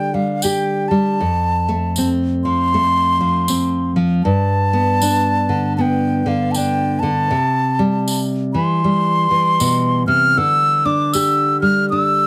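A wooden flute carries the melody up front, its airy, woody tone shaded with vibrato and tongued notes, close-miked and warm. Beneath it, a nylon-string guitar fingerpicks a full-bodied, deep classical accompaniment through chords that move from Dsus4 to F, Gadd9 and C before returning to Dsus4. A jingly tambourine sits lower in the balance from 0.4 to 11.4 seconds, its small-room sound adding gentle sparkle to the swung acoustic folk groove. The mood is hopeful and peaceful, with a relaxed, unhurried lilt. Light reverb and close, detailed miking keep this short passage, cut from a longer piece, intimate and clear.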